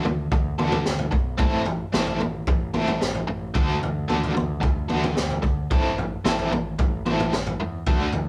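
Mysterious and hypnotic, this short cut from a longer psychedelic rock piece moves at 111 BPM in a straight 4/4, set in A dorian with the harmony shifting between D and Am. A biting, overdriven electric guitar carries the riff, picked and double-tracked, with tremolo giving its tone a shimmering pulse up front in the mix. Beneath it, a growling picked electric bass with overdrive holds the low end in a round, direct-and-amped tone. The crunchy breakbeat drum kit, entering at 0.1 seconds, sits mid-forward with a high-tuned snare, tight kick and toms, its saturated, gritty sound capped by a rolled-off top. Light reverb places the band playing live together in one room, and the whole passage runs as a single section of about 8.3 seconds.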